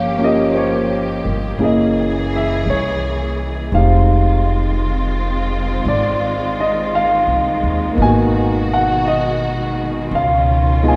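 At a slow 56 BPM in 4/4 with gently swung eighths, this romantic, late-night jazz ballad drifts through an 11-second fragment cut from a longer piece. An upright bass sits up front, its steel-string pizzicato notes woody and thumpy. A concert grand piano, also up front, plays a natural-sounding accompaniment with a deep low register. Beneath it, a symphonic string section holds bowed, lush ensemble chords, focused and smooth on top with a touch of vibrato. The harmony moves from Gm7b5 through Gb9 and a long Fm7 to Abm7 and Db9, all set in the generous, wet bloom of a recital-hall reverb that gives the ensemble a warm, church-like space.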